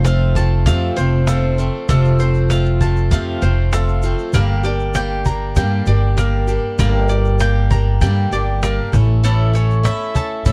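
Indie folk at 98 BPM with a yearning, wistful mood, where a woody, growly pizzicato upright bass sits up front beneath a boxy picked swing-style acoustic guitar, a bright double-strung bowl-back mandolin playing arpeggios, and a snappy cajon and grainy egg shaker in the background, all caught dry on cassette tape as the chords move from F to Gm at 4.3 seconds and to A at 8.9 seconds.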